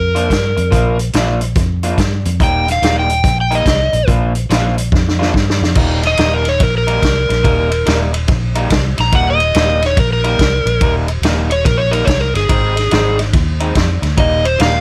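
An up-front, overdriven slide guitar carries the melody and takes a solo from 5.8 seconds in this rollicking, laid-back electric blues shuffle at 143 BPM in Eb major, with a round, foam-muted fingered bass, a slightly broken-up, lo-fi rhythm riff from a guitar through a small old amp, and a small-room vintage drum kit with a punchy kick and rolled-off top that plays a fill at 4.9 seconds, all in a dry sound.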